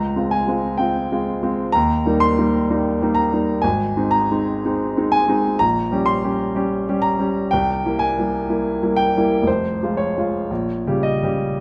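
This classical, romantic nocturne for solo piano moves with a melancholic, yearning mood at a slow 53 to 65 BPM in 4/4, shaped by a free rubato feel. A grand piano with a smooth, vintage tone sits up front and plays alone through the whole 11.6 seconds, ranging from F1 up to C6. The harmony drifts from Dbmaj7 through Eb and Ab to Gdim/Bb, then leans on C7 before settling on Fm and returning to Gdim/Bb near 10.5 seconds. The instrument is tuned slightly low, to A4 = 437 Hz. A moderate recital hall reverb of about 1.4 seconds surrounds the piano, and the top end is softened, with nothing above 10.8 kHz, lending the sound a gentle, aged quality. The passage is cut from a longer piece.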